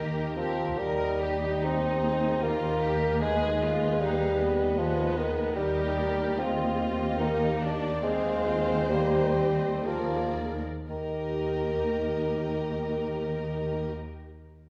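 In a rubato 3/4 that drifts between 56 and 78 BPM and slows from 4.4 to 10.9 seconds, this tender, lyrical fragment of a slow romantic orchestral movement in Eb major moves from Eb through Abm/Eb and Bb7/Eb before settling back on Eb. A mellow solo bassoon with light vibrato, entering at 0.4 seconds, sits up front. Around it, the strings are lush and bowed with vibrato: a woody violin melody set in the background, a distant, smooth second violin line, focused and close violas, expressive cellos with a soft attack, and dark double basses holding Eb, all blooming in the generous reverb of a church or concert hall.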